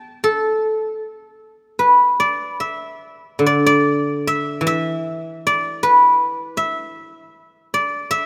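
A free, rubato pulse hovering around 71-83 BPM in 4/4 carries this short fragment of Chinese traditional solo plucked-string music, cast in an E yu mode and tuned a little low to A4 = 436 Hz. A lone guzheng, played with fingerpicks and sitting up front, rings out silvery and acoustic across a range from D3 to A5, shifting into a new section at 3.4 seconds, with a contemplative, longing mood. Lush hall reverb lingers around the instrument, while the overall mix keeps the rough feel of a home demo.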